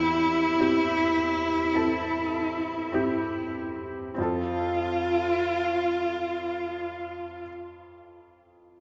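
Drenched in a lush, dreamy hall reverb that softens every edge, this brief fragment of a tender, heartfelt pop ballad pairs a single bowed cello, expressive with vibrato and portamento, singing its melody up front, with a soft, mellow felt-muted upright piano accompanying intimately over a C/E chord that gives way to F, easing to a slower pace over the first 4.2 seconds before the cello falls silent at 7.4 seconds and the piano carries on briefly alone.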